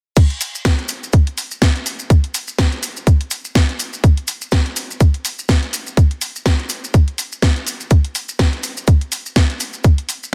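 After a brief stop, a bouncy, swaggering house groove drops in at 0.2 seconds at 124 BPM, with a 57% swing on the sixteenths giving the 4/4 pulse its strut. A tight, layered electronic kick leads up front alongside a produced garage kit of cracking snare, bright hi-hats and crash cymbal, while grainy, mellow acoustic maracas sit further back in their own small room. The sound is dry and densely limited in a modern master, and this cut from a longer track runs to 10.3 seconds.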